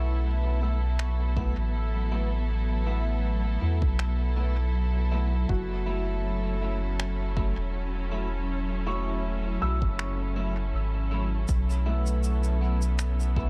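A dark, close small-room sound frames this meditative, spacious ambient dub fragment, cut from a longer piece and moving at 80 BPM in 4/4 with a light swing on the sixteenths. A round, deep sub bass sits up front with a soft, sustained tone and a fast attack, while a rich studio string section holds smooth, evenly bowed chords with light vibrato. Tucked in the background, a felt-muted upright piano plays mellow, intimate arpeggios, its thick felt and audible action noise trailing into dub echo. An electric guitar at the edge of break-up adds compressed, picked stabs coloured by analog chorus and dub echo. Dry, airy finger snaps and shaker enter at 1.0 seconds, carrying a small room reverb and dub echo, and a layered, overdriven electronic kick joins deep in the background at 1.4 seconds. The harmony drifts from B7sus4 to F#m7 and back to B7sus4.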